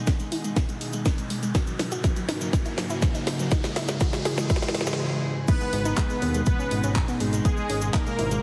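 A brilliant, morphing wavetable pad and a soft, round pluck with tape echo open this bittersweet, emotional progressive house passage at 122 BPM in G# minor, both pumping against a punchy, up-front electronic kick while a riser, a drum fill and a filter sweep on the pluck build tension over a house kit of cracking snare, handclaps, hi-hat and crash, with a grainy, distant cabasa in the background. At 5.5 seconds the drop arrives on G# minor with a smooth, detuned supersaw melody, and a fat, nasal, saturated analog bass joins at 5.7 seconds, pumping under the drums. The whole mix sits in a lush hall reverb and has a heavily compressed, radio-like sound with lossy artefacts.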